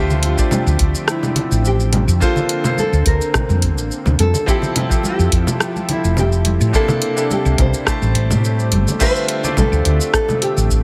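Sunset chillout in a wistful, smooth mood, this excerpt cut from a longer piece has a fingerpicked nylon-string guitar carrying the melody over a bright, brilliant concert grand piano, both touched with digital delay, while a lush, warbling unison pad with chorus holds sustained chords in the background. Up front, a growly, punchy woody fretless electric bass with ensemble chorus anchors the chords moving from Dm11 through Bbmaj7/D, Fmaj9, C9 and Am7 before returning to Dm11 at 9.0 seconds. A tape-flavoured, layered deep house drum kit with crash, hi-hat, rim click and shaker enters at 0.1 seconds alongside soft-handed, saturated congas, joined at 0.4 seconds by a deep analog electronic kick, all set in a light reverb.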